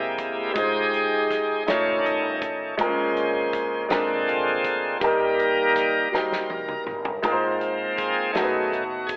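A bright, shouting tonewheel organ with key click, slow rotary speaker and light overdrive carries the solo through this slow, hopeful and jubilant 6/8 gospel passage at 54 BPM, cut from a longer piece, over an intimate, woody upright piano up front with audible action noise and long sustain, a dark, growly pizzicato upright bass in the background, and a soul drum kit with a tight kick and rolled-off top that enters at 0.2 seconds and plays a fill from 6.1 to 7.2 seconds, the whole heard through a telephone-like sound and a moderate echo chamber reverb.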